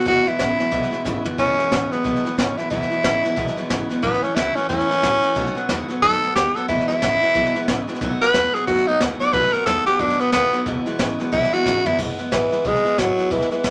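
A raspy, growling tenor saxophone sits up front with breathy vibrato and scooped notes, taking a punchy solo from 1.4 to 12.0 seconds in this rollicking, upbeat rockabilly fragment, swung at 181 BPM in E major over E, A and B7 chords. Beneath it, a full-bodied steel-string acoustic guitar is picked with audible finger squeak, while a twangy, slightly broken-up electric guitar plays a riff in the background until 12.0 seconds. A woody, thumpy pizzicato upright bass and a brushed drum kit with dark cymbals, a boomy kick and short fills drive the swing in an airy small room.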